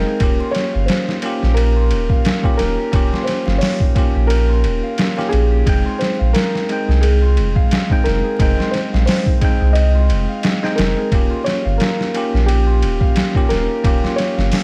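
A deep, round dub sub bass sits up front in this melancholic, cinematic trip hop excerpt at 88 BPM in 4/4, with a 55% swing on the sixteenths. A gritty, pitched-down sampler-style drum kit enters at 0.2 seconds, its thumpy kick, medium-tuned snare, hi-hat and ride cymbal compressed and re-recorded in a small room. Over this, a felt-muted upright piano carries the melody in a mellow, intimate voice with audible action noise and tape echo. A bell-like tine electric piano accompanies it with harmonic tremolo, and a concert harp adds fingerpicked arpeggios, ringing in the background through its own tape echo. The harmony moves from Eb7 to Fm7 at 5.7 seconds and back to Eb7 at 11.1 seconds, inside a dark digital ambience touched with vinyl crackle.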